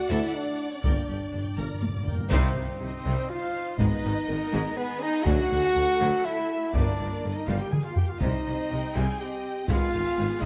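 Lightly reverberant and full-bodied, this excerpt from an epic, relentless orchestral film cue in triple time is driven by a compressed, saturated taiko ensemble struck with hard sticks, while close timpani add a fill near the start and return at 6.7 seconds. Dark, roomy French horns hold sustained chords with soft-edged trombones, and a distant trumpet punctuates with stabs; a mellow, very quiet tuba, smooth cellos and even double basses anchor the bass. A lush violin section carries the melody with vibrato, supported by a second violin line, bowed violas and an airy silver flute that enters at 2.1 seconds behind it.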